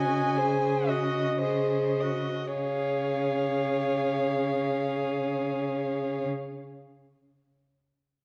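This brief excerpt from a slow romantic movement for string quartet opens with all four muted instruments sounding together, veiled and serene in Db major, in a rubato 6/8 at roughly 33-42 dotted-quarter beats per minute. The first violin carries the melody between Eb5 and Ab5 with a dark, con sordino tone, vibrato and gliding portamento, while the second violin sings a shadowed line beneath it from C5 to Eb5. The viola fills in a close, soft-attacked accompaniment between Gb4 and Ab4, and the cello holds a low Db3 in the bass with vibrato and a distant placement. Over the first 2.6 seconds the music slows as an Ab7 harmony rests on the Db bass, then settles onto a plain Db chord as a second phrase begins, with the quartet playing on together until 6.3 seconds. The whole sounds through the reverb of a recital hall and the worn, warbling pitch drift of old cassette tape, giving it a hazy, faded quality.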